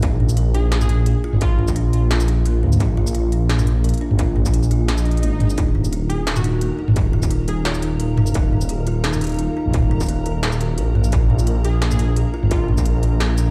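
Half-time drum and bass at 173 BPM, tuned slightly flat of standard pitch, with a tense, dark mood, built on a rumbling detuned saw bass, a distorted kick and an up-front industrial kit of clanging snare, crisp hats, shaker and toms, all moving between Bb and Ebsus2. Behind them a moody, pumping ambient pad holds sustained chords while a woody kalimba rings out delayed arpeggios, and a crystalline, wave-folded pluck drops in brief melodic fragments from 0.5 seconds. An electronic swell at 5.0 seconds leads into a faint flickering, grainy granular texture, and the whole cut sounds as if played through a big sound system in a bare room.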